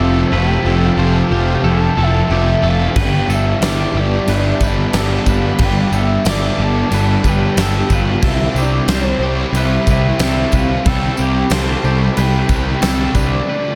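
A dreamy mix soaked in lush hall reverb frames this wistful shoegaze and dream pop rock excerpt at 91 BPM, moving from F through Gadd9 to Cmaj7. A round, octave-layered synth lead carries the melody through chorus, phaser and diffuse ambient delay over a brassy, evolving analog pad. A twangy clean guitar picks compressed arpeggios, while an overdriven semi-hollow guitar with reverse reverb, a very quiet double-tracked sludgy guitar and a thick fuzz guitar with ensemble chorus play riffs beneath them, all over an up-front fuzz-driven bass, and a gated 80s kit with a punchy kick, fat snare and bright cymbals joins them at 3.0 s alongside a jingly tambourine.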